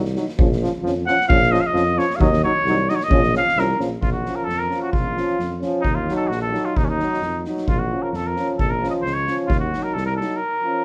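This Balkan brass band piece, cut from a longer performance, has a restless, bittersweet mood and a lightly swung two-beat feel. A muted cornet with a nasal, classical tone enters at 1.1 s and carries the melody up front. Beneath it, a bright trombone with vibrato and a soft-edged, warm euphonium provide accompaniment, the euphonium sitting in the background. A mellow tuba with light vibrato and a smooth top anchors the bass. A street-band drum kit adds percussion from the start, with a boomy kick and a medium-tuned snare, all dark and rolled off on top. The harmony alternates between B-flat minor and E-flat minor, and the band plays live together in a large studio with a moderate reverb.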